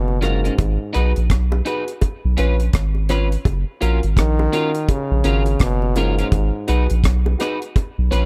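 Roots reggae at 84 BPM in F# major, laid-back and sunny, this short cut from a longer piece moves through F#maj7, G#m7 and C#7 over a deep reggae drum kit with a tight, dry kick, hi-hat and rim click sitting up front beside a round, soft dub sub bass. A clear, punchy trombone carries the melody with scooped, forceful notes and dub echo until 6.7 seconds. Around it, a slightly broken-up electric guitar with analog chorus and dub echo, woody vintage upright piano stabs and high-tuned bongos in the background fill out a small room.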